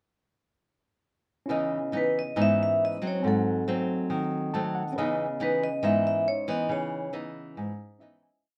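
A metallic, ringing vibraphone struck with medium mallets carries a motif-based melody of song-like phrases with a slow motor vibrato and a vintage, band-limited tone, up front in this smooth, wistful bossa nova in C# minor at 138 BPM. Alongside it, an up-front, dark, woody nylon-string guitar with old strings is fingerpicked in classical style, pairing thumb bass with syncopated plucked chords, while a clean tine electric piano played through a combo amp holds drop2-voiced chords and adds short fills. The brief piece moves through C#m9, G#7b9 and back to C#m9 in moderate studio reverb, fading out from 6.7 to 8.4 seconds.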